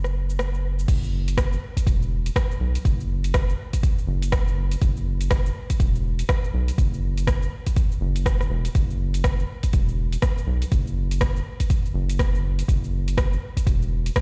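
Afro house at 122 BPM with a swung 16th-note feel, this earthy, warm excerpt opens on a round, dark analog bass with a fast-attack filter pluck and sidechain pumping, set against an overdriven, layered deep house kit of cabasa, hi-hat, rim click and crash, before the drop at 0.9 s brings in a deep, up-front overdriven electronic kick, both drum parts carrying a small-room ambience and the whole mix sounding dry yet booming, as if played on a big system in a bare stone room.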